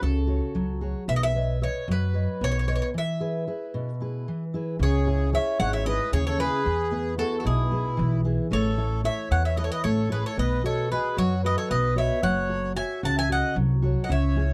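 This dry, close recording has the intimate feel of a 1970s studio session, with little reverb around the players. It is a relaxed, warm Greek folk piece for a small bouzouki band in E major, moving in 7/8 at 226 eighth-note beats per minute with a straight feel. The bright, metallic Greek bouzouki carries the melody up front, its picked double strings partly doubled at the octave. Beneath it, a fingerpicked dreadnought steel-string guitar supplies the accompaniment, and a woody, thumpy pizzicato upright bass with gut strings sits prominently at the bottom. After a break beginning at 2.9 seconds, a reedy accordion joins at 4.8 seconds with a full, close-miked second line marked by slow beating. The harmony opens on suspended and added-ninth colours before settling into a steady progression of C#m, E, A, B and F#m, and the passage is cut from a longer piece.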